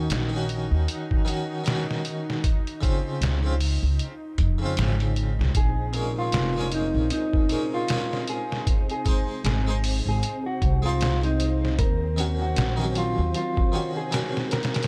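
Trip hop with a hypnotic, dark mood, cut from a longer piece: a compressed, pitched-down sampler-style drum kit with a thumpy kick thuds up front beside a woody pizzicato upright bass, while a brilliant, close-miked harpsichord carries the accompaniment with tremolo, 12-bit grit and tape echo over a tense, bowed-like drone sitting in the background. At about 5.5 seconds a full-bodied string machine cello pad adds soft sustained chords with ensemble chorus, and a clean, fingered electric guitar enters with a mellow melody touched by grit and tape echo. The bass drops out at 13.3 seconds, and a light reverb sits over the whole.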